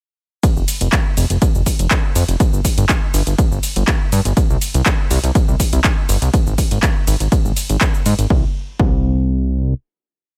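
Progressive house with a dreamy, emotional mood, built on a straight 4/4 pulse. A punchy, overdriven electronic kick sits up front in a four-on-the-floor pattern, while a deep house drum kit adds metallic hats, shaker, ride and a handclap backbeat, also overdriven and re-recorded in a large room. Alongside them a fat analog bass built from sawtooth, square and triangle waves, detuned and touched by ring modulation and a filter sweep, gallops in sixteenth notes with a sidechain pumping feel. The drop runs from 0.4 to 8.3 seconds, after which the kit falls away and a final chord carries the piece to its close, with the bass sustaining until 9.7 seconds. The mix is dry, with the bass and kick pressed forward.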